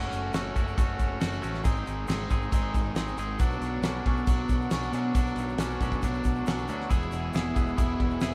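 Indie rock at 137 BPM with an upbeat, carefree mood, built on a crunchy overdriven guitar riff with spring reverb and a clean, twangy second guitar riff over a growling, overdriven fingered bass and an up-front, cloth-damped drum kit with a fat snare, tight kick and dark cymbals. A grainy egg shaker sits in the background, and a smooth, detuned sawtooth pad with chorus slips in at 7.2 seconds as the chords move through F#m, G#, Bmadd9 and E. The band plays live together in a stone room with moderate reverb, in a short cut from a longer piece.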